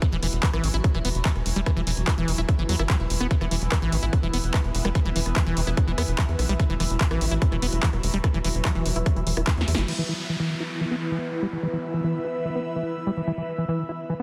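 A squelchy, resonant acid bass riff and a tight kick drive this alien psychedelic trance excerpt at 146 BPM from the start, over a dark, saturated sequencer bass, overdriven techno drums with crash, handclaps, hi-hat, rim click and a punchy snare, and two sidechain-pumped pads: a morphing, detuned wavetable pad sitting in the background and an airy, breathy pad with chorus and phaser on top. After a fade-in on the pad, a drum fill runs from 9.5 seconds with a band accent at 9.7 seconds, and around it the kick, drums and sequencer bass drop out; by 9.9 seconds a downlifter and a filter sweep on the ambient pad carry the remaining bars. The mix is dense and heavily limited, with light digital ambience.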